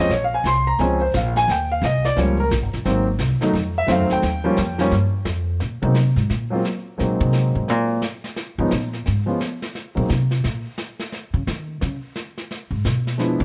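Swung eighth notes in 4/4 drive this playful jazz piano trio fragment, cut from a longer piece. A concert grand with a rich, deep low end carries the melody up front, colored by plate reverb, and holds the solo spotlight for the first 5.6 seconds before the upright bass takes its own solo through to the end. The plucked bass is woody and thumpy on steel strings and sits close in the mix, while the piano drops out at 10.1 seconds and returns only for a brief touch near the close. A vintage brush kit of snare and hi-hat sits further back, its medium-tuned snare heard in a small room with a rolled-off top. The whole recording carries a worn cassette character with warbly pitch drift and a light reverb, giving it a warm glow.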